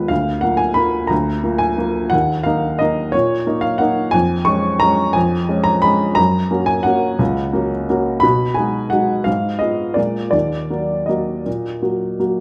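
Classical piano waltz in Eb minor, elegant and wistful, where a solo upright piano with a woody, intimate, slightly detuned tone and audible action noise sits up front in moderate recital hall reverb, moving with rubato in 3/4 at 156-188 BPM through Ebm, Db/F, Gb and B6 before resolving via Bb7 to Ebm at 10.3 seconds in this brief cut from a longer piece.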